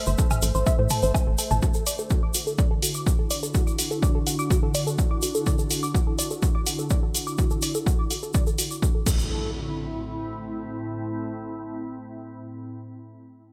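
A punchy, up-front electronic kick anchors this driving, melancholic melodic techno cut at 125 BPM in A dorian, joined by a dark sawtooth sequencer bass heard only from 0.1 to 1.6 s, nasal detuned arpeggios with 12-bit grit and digital delay, a grainy acoustic egg shaker, an overdriven analog drum machine playing crash, hi-hat, toms and woodblock, and a morphing wavetable pad under a filter sweep holding Am and Dadd9 chords until an electronic impact arrives at 9.1 s, set in bright 1980s-style digital production with light reverb.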